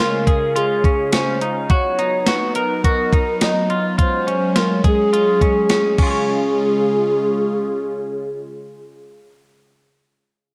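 At a straight 105 BPM in 4/4, a gated 80s digital drum machine sits up front from 0.3 to 6.1 seconds, its thumpy kick, hi-hat, crash cymbal and gated-reverb snare carrying a tape-warm, sampler-style character, as if re-recorded in a small room. This short dream pop excerpt in Db major floats with a blissful mood, moving through Dbmaj7, Cbmaj7 and Gbmaj9#11 before settling on Db at 6.0 seconds. A warbling, nostalgic lead blends square, sawtooth and triangle tones with a soft attack and vibrato, its melody coloured by chorus and slapback echo. Beneath it, a swirling phased analog pad of detuned sawtooths holds sustained chords with a slow attack and long release, while a bright, clean semi-hollow electric guitar picks arpeggios touched with subtle chorus and slapback echo. A moderate plate reverb wraps the whole mix, and after the drums stop the guitar, pad and lead drift on into a brief second section.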